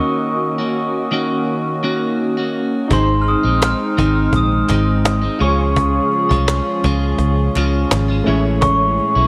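Indie and bedroom pop at 84 BPM in a straight 4/4, hazy and dreamy, tuned slightly sharp to A4 = 441 Hz, this short cut from a longer piece opens on a break over Ebm7. A mellow, bell-like glockenspiel played with rubber mallets carries the melody high up, bathed in lush chorus and slapback echo. Beneath it, an up-front, clean picked electric guitar with subtle chorus and vibrato shares the accompaniment with warbling, nostalgic lo-fi synth keys colored by cassette tape character, while a hollow, flute-like pad sustains soft chords in the background. At 2.9 seconds, as the harmony moves to Ab, a dark, round, foam-muted electric bass arrives punchy and up front, joined by a woody cajon with faint snares and a gritty 12-bit sampler texture. Group handclaps enter in the background at 3.6 seconds, and the progression later passes through Db before settling on Amaj7, all within light reverb and a small room ambience.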